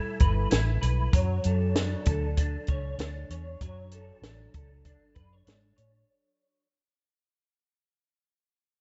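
A compact cocktail drum kit sits up front in this short, laid-back indie pop and bedroom pop cut, its high-tuned snare, punchy kick and hi-hat sounding natural and close in a tight booth. Beside it, a vintage muted fingered electric bass adds a dark, round, foam-muted tone that is amped and just as punchy, also placed up front. An electric guitar through a small old amp carries the accompaniment from 0.0 seconds, picked with a bright, twangy, slightly broken-up edge and colored by ensemble chorus and vibrato for a dreamy shimmer. The groove moves at 97 BPM in 4/4 with a gentle 16th-note swing, over a G69 chord that shifts to Dmaj7 at 1.1 seconds. Small room ambience and a soft, rolled-off top end give the sound an intimate, hazy quality. Cut from a longer piece, the whole passage fades out, ending at 6.1 seconds.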